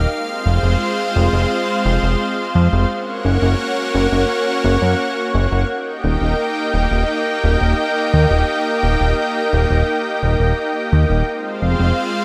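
Awash in a long plate reverb and bright 1980s-style digital sheen, this nostalgic, romantic synthwave excerpt moves at 86 BPM in a straight 4/4 in Eb major, tuned slightly flat to A4 = 437 Hz. A lush, detuned unison pad with a slow attack, long release and chorus holds sustained chords through Fm, Gb and Eb, returning to Fm at 11.3 seconds. Underneath, a fat, up-front analog bass blends detuned sawtooth and square waves with a filter sweep and moving notch, sounding mellow with a fast attack before it stops at 11.9 seconds.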